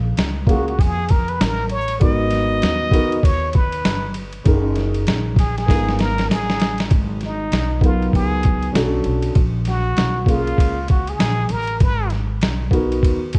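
A plunger-muted trumpet with a brilliant, wah-wah bite and light vibrato takes a forceful solo from 6.9 seconds in this smoky, cool jazz-hop excerpt, set over a gritty, pitched-down boom bap kit with a thumpy kick and a drum fill at 5.7 seconds, woody pizzicato upright bass, and a dark, mellow grand piano whose action noise adds intimacy, all colored by cassette tape and a moderate recital-hall reverb.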